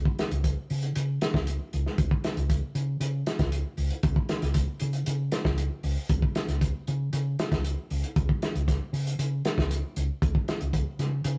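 A rough, lightly reverberant rehearsal-room sound frames this defiant, driving afrobeat excerpt, where a muffled, lo-fi vintage drum kit with a tight kick, medium-tuned snare and hi-hat sits up front beside a dark, round hollow-body short-scale electric bass played with the fingers between C#2 and C#3.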